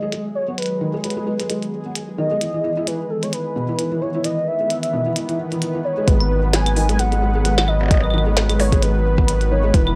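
Eerie and melancholic, this swung IDM excerpt moves over G#m7 and Emaj7 chords. A velvety, detuned synth lead carries the melody above a chorused vintage analog pad with a filter sweep, while a felt-muted upright piano plays dark arpeggios with audible action noise. A bubbling, resonant stepped-filter texture sits in the background and a glitchy kit of clicky hats, a tiny snare, claves and percussion blips ticks along throughout; when the texture stops at 6.1 seconds, a round, up-front analog bass and a deep electronic kick drum enter, all captured in a dry, gritty hardware sound.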